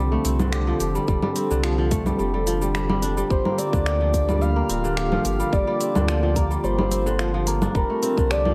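A softly reverberant mix with a digital ambience frames this excerpt of meditative organic downtempo in G minor, moving at 108 BPM in 4/4 with a light 16th-note swing. Crisp, ringing fingerpicked kora arpeggios with delay sit up front over a round sine sub bass and a detuned sawtooth analog pad with chorus and sidechain pumping. A tape-warm electronic kit of cabasa, congas, finger snaps and smooth hi-hats starts at 0.2 seconds and a tight kick joins at 1.1 seconds, and then at 3.3 seconds, as the harmony moves from F6 to Gm7, a breathy, flute-like synth lead with vibrato, lush chorus and delay carries the melody.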